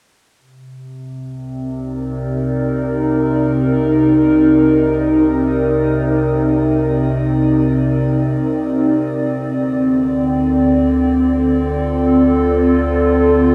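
A serene, melancholic ambient passage, cut from a longer piece, fades in on a synth drone from 0.4 s. A warbling, detuned, lo-fi pad sits up front with mellow, nostalgic sustained chords colored by chorus, phaser and shimmer reverb, moving from Cm7 to Dm7 at 9.0 s, while a deep, ominous, rumbling bass drone lies far beneath it. The whole piece floats in a vast, echoing space with a huge, wet reverb tail of 7.3 seconds.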